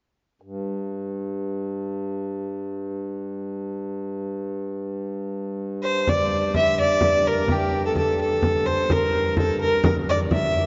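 Ancient and mysterious, this fragment of a medieval dance in 6/8 opens on a reedy, breathing pedal harmonium drone set up front, joined at 5.8 seconds by a single biting fiddle with light vibrato and an airy, earthy bow, and at 6.1 seconds by a close, dry frame drum, the whole heard through a long, dark cathedral reverb.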